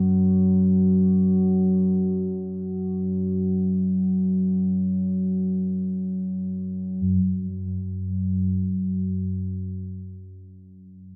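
A deep, rumbling drone sits up front and plays alone from the start, its dark blend of triangle and sawtooth tones swelling in with a slow attack, sustaining between F#2 and F#3, and fading on a long release through its own built-in reverb before stopping at 10.3 s. This ambient fragment of a longer piece drifts in free time, tuned to A4 = 445 Hz, with a moderate cathedral reverb lending a vast, ominous space. The music moves into a new section at 7.1 s.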